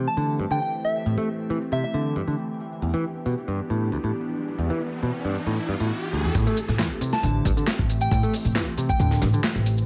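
A swirling, detuned analog pad with phaser, chorus, sampler grit and sidechain pumping opens this funky, raw breakbeat fragment alongside a bright, overdriven picked electric bass riff with tape echo, while a soft, pure FM synth bell melody with an AM-radio tint floats above. An electronic riser builds from 4.2 seconds, then at 6.3 seconds a dusty, compressed sampler-style kit with a thumpy kick and gritty overdrive, filtered electronic shaker and handclaps, and a woody, dark pizzicato upright bass up front enter just as the drop lands at 6.4 seconds. Vinyl crackle and light digital reverb color the whole mix as the chords move from Am7 to Em7 and back.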